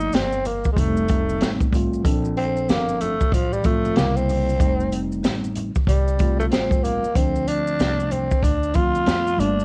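A growling tenor saxophone leads this cool, relaxed jazz-hop excerpt, its breathy, raspy subtone carrying vibrato and scooped notes up front before it takes a solo from 2.0 seconds to the end. Set in Bb major at 94 BPM with a swung sixteenth-note feel, the groove rests on an open jazz drum kit that enters at 0.1 seconds, with its high-tuned snare, boomy kick and hi-hat sitting up front in a small room. A mellow tine electric piano comps through its built-in speakers, moving from Gm7 and F9 into Bbmaj7, C7b9, F7 and Dm7, while a woody, thumpy upright bass on gut strings plucks the low end. Maracas and congas, hard-handed and dry, ring softly in the background. The saxophone and drums carry a cassette-tape grit, the saxophone and piano share a plate reverb, and vinyl crackle gives the whole home-recorded cassette sound a lo-fi haze.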